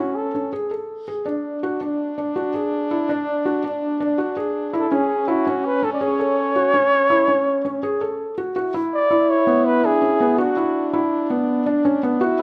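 Moderate recital-hall reverb surrounds this hypnotic, pensive contemporary chamber piece in 5/4, cut from a longer work. Up front, a thick-felted upright piano plays soft, intimate arpeggios throughout, while a mellow French horn carries a present, classical-style second line. The dark, breathy flugelhorn, close-miked and whispered, touches in at the very start and returns at 4.8 seconds with scooped notes and jazz-style vibrato. It falls away at 11.1 seconds, after the harmony has moved from rootless extended chords through A to B minor at 8.6 seconds.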